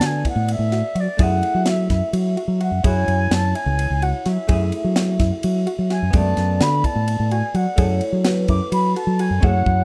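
A rough home-demo mix with studio ambience frames this tense, intricate progressive instrumental in 7/8 at 255 BPM (eighths), a straight-feel excerpt in F# minor cut from a longer piece and moving through chords such as Bm7, F#m7 and C#madd11. A reedy, airy wooden flute with vibrato and a crisp attack sits at a distance and solos throughout, while a ringing vibraphone with medium hard mallets and digital delay plays a second line behind it. A dark, clean hollow-body jazz guitar and a soft, round synth pluck with chorus and delay fill in accompaniment and arpeggios beneath a punchy, up-front fingered electric bass and a polished fusion drum kit with a high-tuned snare, which closes on a fill from 9.4 to 9.8 seconds.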